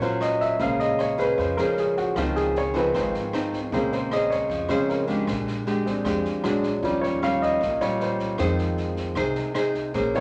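This bossa nova excerpt in Bb minor moves at 154 BPM in a straight 4/4, with a smooth, wistful mood and a slightly low tuning of A4 = 436 Hz. A baby grand piano, warm and natural, sits up front and takes a solo across the full 10.2 seconds. A small, fingerpicked nylon-string guitar sits close beside it in the accompaniment. An open jazz drum kit with a boomy kick, rim clicks and a medium-tuned snare sounds natural, as if in a small room. A woody, plucked upright bass with steel strings joins at 0.6 s. The harmony drifts through rich extended chords such as Ebm9, Bbm9, Dbmaj9 and Bb13 before settling on Fm7, all wrapped in a moderate large-studio reverb.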